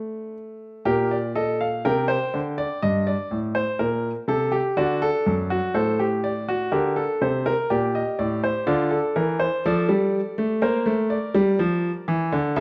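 This is a classical, baroque-style fugue in three voices for solo grand piano, cut from a longer piece. The mood is contemplative yet driving, with a steady, straight pulse in four. The piano sounds smooth and vintage, sitting up front with a warm, dark character, and it spans a range from F#2 up to G5. A D5 chord opens the recording before the section proper begins at 0.9 seconds, and the harmony moves through Gm/Bb, Eb/G, D, Gm and Dm as the voices unfold. A moderate recital hall reverb gives the instrument a sense of space, and the piano plays through to the close at 12.6 seconds, tuned slightly below standard pitch.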